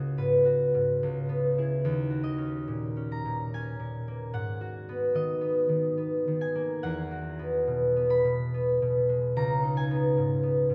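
Gentle and mysterious, this short classical excerpt for solo concert harp unfolds in a rubato three-beat lilt, its bright, ringing, fingerpicked tone placed up front and spanning C#2 to B5 as lush chords like G#m9 and Emaj7 drift toward a closing C#sus2, all bathed in a wet church reverb.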